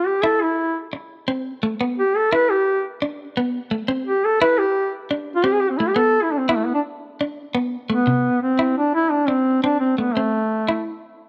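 A mellow duduk with soft-attack vibrato and a distant, roomy folk character leads this carefree, sunny highlife cut from a longer piece in 12/8 at 115 BPM in C major, taking a featured solo through the first 8.1 seconds while a dark, clean, picked electric guitar accompanies from 0.2 seconds, both up front in light studio reverb as the chords move from C through G/B and a rootless Asus2 to Cmaj7 before the harmony drops out.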